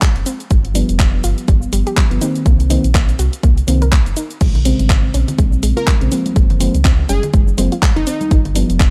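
A swung 4/4 deep house groove rests on a punchy, tape-warm electronic kick up front, with a house kit of hi-hat, shaker, handclaps and crash cymbal re-recorded in a large room, while overdriven congas join in the background at 4.6 seconds. A deep, full sine sub bass with its octave and a warbling, vintage FM electric piano playing dark stabs both carry sidechain pumping, and a soft, round pluck traces arpeggios behind them through chorus, pumping and analog delay over moody chords such as G7, Cm7b5 and Bbm9. At 5.8 seconds a catchy, detuned sawtooth unison lead enters with a filter sweep and analog delay, in a dry, gritty hardware recording cut from a longer piece.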